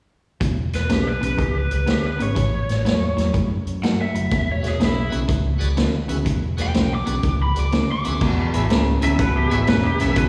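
A swung 123 BPM shuffle in 4/4 drives this soulful, rollicking electric blues excerpt. From 0.4 s a gritty, saturated vintage drum kit with dark cymbals and a tight kick sits up front beside a round, foam-muted fingered bass, while a twangy, slightly broken-up rhythm guitar plays the riff through spring reverb and slapback echo over E7, A7 and E7 chords. An overdriven, lo-fi lead guitar with analog delay carries the melody and takes a solo over an E chord from 8.2 s, after a bright, shouting tonewheel organ with key click and a slow rotary speaker joins softly in the background at 4.6 s, all heard as a live gig through the venue's PA with small-room and recital-hall reverb.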